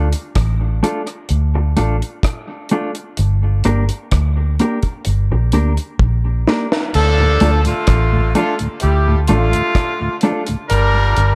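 A light reverb and small-room ambience frame this spacious, hypnotic dub reggae excerpt, cut from a longer piece and moving at an unhurried 64 BPM in 4/4 with a straight feel in D minor. Up front, a dark, round, foam-muted fingered bass anchors the low end while a deep, dry acoustic drum kit, with its tight kick, high-tuned snare, rim click, hi-hat and crash, sits close with a smooth, rolled-off top. A mellow, clean, compressed electric guitar supplies the accompaniment, its fingered playing trailing a tape echo over the shifts between D minor and G minor. A drum fill at 6.0 seconds leads into the second section, where a clear horn section with light vibrato enters at 6.9 seconds as a pop-style second line, also carrying tape echo. Shortly after, at 7.2 seconds, a soft tonewheel organ with chorus vibrato and a slow rotary speaker adds a hazy layer in the background.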